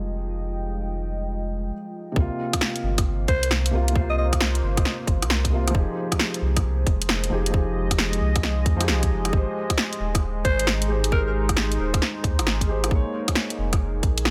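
Future garage at 134 BPM in F minor with a swung, nocturnal and melancholic feel, in which a soft, felt-muted upright piano with dub echo and a deep, detuned sawtooth pad carrying chorus, 12-bit sampler grit and a filter sweep in the opening both pump with sidechain over a round sine sub bass before a tight, overdriven electronic kick arrives at 2.2 seconds, joined at 2.5 seconds by a garage kit of hi-hat, rim click and cracking snare, while a raspy alto saxophone with vibrato and dub echo cuts in with brief solo phrases at 3.3 and 10.4 seconds over chords moving from Fm9 through C7sus4 and Abmaj7 to Bbm7.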